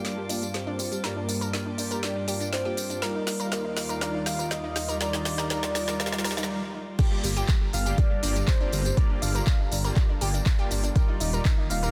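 A straight 4/4 pulse at 121 BPM drives this emotional progressive house passage in G minor, where a deep house drum kit with woody snare and smooth hats backs a mellow octave-layered synth lead, a lush unison pad, round analog pluck arpeggios and soft supersaw stabs, the synths pumping against the sidechain over Gm7 and Ebmaj9 as filter sweeps on the lead and stabs build beside a glassy, drifting background texture, until a brief stop and an electronic swell give way at 7.0 s to a drop with an up-front deep kick, joined moments later by a dark, rumbling detuned saw bass under a dense, heavily limited master.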